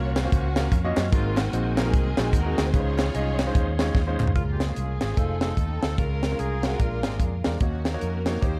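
A tight, dry funk drum kit with a high-tuned snare drives this hopeful, soulful uptempo gospel piece at 148 BPM in Db major, joined by a punchy fingered electric bass, a clear concert grand piano and a lush, distant string section carrying the melody, while a reedy tonewheel organ with fast rotary speaker and key click and very quiet, hollow handclaps sit in the background until 4.3 s, after which an edgy, forceful alto saxophone joins the strings on the melody from 4.4 s to 7.2 s, all in a dark production with little reverb.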